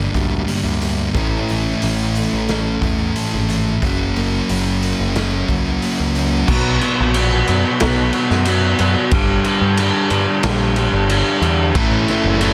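Cathartic and angsty, this quiet-loud alternative rock cut moves in a straight 4/4. In the background, a full-bodied steel-string acoustic guitar picks arpeggios with audible finger squeak, while a thick, dark fuzz guitar plays a riff up front. Underneath, a growling picked electric bass with overdrive holds the low end throughout, and a raw garage drum kit of crash, hi-hat, boomy kick and medium-tuned snare pumps in a small room, its dark cymbals and rolled-off top giving it a gritty, saturated edge. At 6.5 seconds the acoustic and fuzz parts drop away and a biting overdriven guitar takes over the riff, sitting loudest in the mix, before the fuzz guitar returns briefly at 11.8 seconds. The dense, heavily limited master and small room reverb keep the whole passage tight and in your face.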